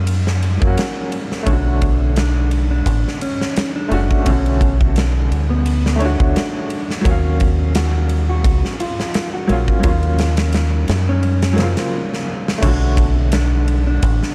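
Melancholic, cinematic trip hop at 86 BPM with a light 16th-note swing, this excerpt pairs a deep, round dub bass and a huge, up-front arena drum kit with punchy kick and bright cymbals against a clear, woody upright piano shimmering with tremolo and tape echo, while a mellow, compressed electric guitar carries the melody from 1.5 seconds over D#m7 and Bm7 chords, all in a dark small-room production, until a stop at 11.9 seconds gives way to a drum fill at 12.1 seconds.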